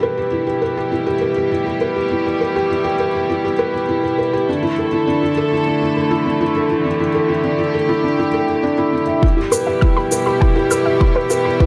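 Melancholic and moving, this fragment of piano and strings electronica centres on a felt-muted upright piano riff, dark and intimate with audible action noise, shaded by a low-pass filter and digital delay. Beneath it, a reedy, gut-toned string section holds sustained chords that pump with sidechain, while the harmony moves from Em to Dsus2 and back. At 9.2 seconds a build-up begins: an overdriven electronic kick drum enters up front alongside a warbling, lo-fi sawtooth pluck playing arpeggios in the background with chorus and delay, and an overdriven shaker joins at 9.5 seconds, all within a light reverb.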